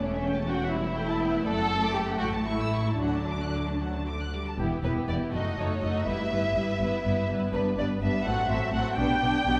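A dark, woody violin section carries the melody up front in this lively, spirited excerpt from a quick classical-period movement for string orchestra in a rubato 6/8, with a second violin section adding a more distant line, the violas giving smooth, even accompaniment, and the cellos and a focused chamber double bass section supplying a rich bass, all bowed with vibrato in a lush concert hall bloom.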